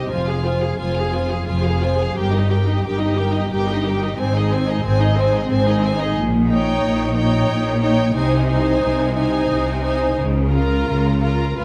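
Classical music for string orchestra, this is a slow, romantic movement in 3/4 at 89 BPM, played with rubato and uneven beats in Ab major, and its mood is serene and warm. Across the whole 11.6 seconds, a lush first violin section carries the melody between Eb5 and Bb5, sitting quieter in the blend than the lower strings. Beneath it, a second violin section plays an expressive line with vibrato and portamento, while the violas supply smooth, even accompaniment. The cellos give the bass a focused, close presence, and the double basses sit up front, doubling that foundation an octave lower. The harmony moves from Fm through Eb/G, Ab and Eb7/Bb to Ab/C and Bbm/Db, all inside a reverberant scoring-stage ambience, and a layer of vinyl crackle runs throughout this fragment cut from a longer piece.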